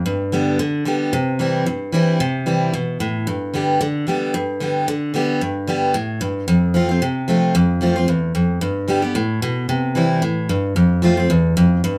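A moderate studio reverb gives this short cut from a longer piece a sense of room, heard from a little way back, while the guitar itself stays up front. It is a brisk, virtuosic bluegrass passage in 4/4 with a light swing on the eighth notes, carrying a rustic, down-home mood. A single picked steel-string dreadnought acoustic guitar plays alone throughout the 12 seconds, its tone bright and full-bodied. The part spans from the low E2 string up to G4, reaching from deep bass notes to higher picked lines. The harmony moves among G, C and F, which gives the phrase its lively, old-time flavor.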